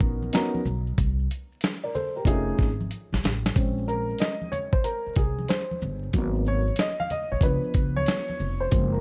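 Cool and mellow, this jazz-hop excerpt in Bb minor moves at 93 BPM with a swung sixteenth-note feel. Up front, a gritty, compressed sampler-style drum kit with a thumpy kick and medium-tuned snare sits beside a woody pizzicato upright bass and a dark, smooth, vintage baby grand piano, while maracas and congas sit quietly in a small room. A drum fill at 2.9 seconds leads into a piano solo from 3.6 seconds, all set in a dark, warm production with studio reverb and vinyl crackle.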